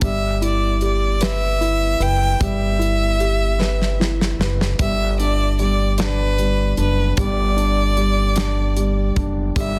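A dense, heavily limited modern master with studio ambience frames this swaying, romantic pop ballad in six-eight, cut from a longer piece. A clear, focused solo violin carries the bowed melody with vibrato and a digital delay, over a soft felt-muted upright piano whose action noise is audible, while the woody, thumpy pizzicato upright bass sits up front as the most prominent part. A modern studio drum kit with a punchy kick and medium-tuned snare plays a fill from 3.6 to 4.8 seconds, leading into the harmony's move from E minor to G at 4.8 seconds.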